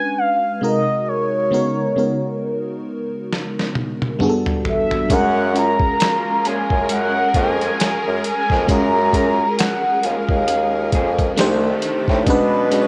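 A warm, relaxed neo-soul and R&B fragment at a slow 67 BPM in F# major, with a swung sixteenth-note feel that gives it an unhurried lilt. It opens on a mellow, horn-like synth lead with a round, sawtooth-based tone, soft attack and vibrato, carrying the melody up front over a lush, dreamy FM electric piano with a soft pad layer. Both are treated with chorus and phaser. A gritty, pitched-down boom bap drum kit with a thumpy kick and medium-tuned snare arrives with a fill at 3.3 seconds, sounding compressed and sampler-like yet roomy. At 5.1 seconds, as the harmony settles on F#maj9, the arrangement fills out: a bowed studio string section adds sustained chords with portamento and a smooth top, a vintage-styled horn section sits in the background with octave-doubled stabs, and a solo bassoon with light vibrato takes the bass line in a classical style. From 6.4 seconds a slightly broken-up, lo-fi electric guitar picks a second line from behind, all within a light reverb that keeps the piece intimate.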